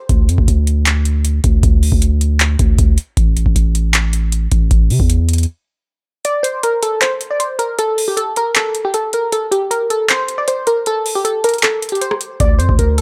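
Dark and eerie, this short trap cut at 156 BPM in a half-time feel pairs booming, overdriven analog drum machine kick, metallic hats, handclaps and rim clicks with a deep, sine-like 808-style bass that holds long decaying notes until 5.5 seconds, before a glassy, crystalline wavetable pluck with chorus carries the melody from 6.2 seconds while the kick drops out, all in a dry, up-front mix.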